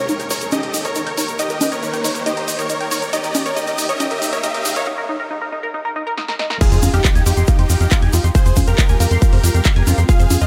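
A euphoric uplifting trance passage opens on a huge, detuned supersaw lead with a lush unison pluck, a shimmering ethereal pad and a tight, phaser-tinged sequenced arpeggio, all pumping while filter sweeps, a background riser, a grainy tube shaker and a punchy analog drum machine with congas, handclaps, hi-hat, snare and crash build toward a break and a drum fill, before the drop at 6.6 seconds brings in an up-front layered kick, an impact and a dark, tube-saturated sequencer bass.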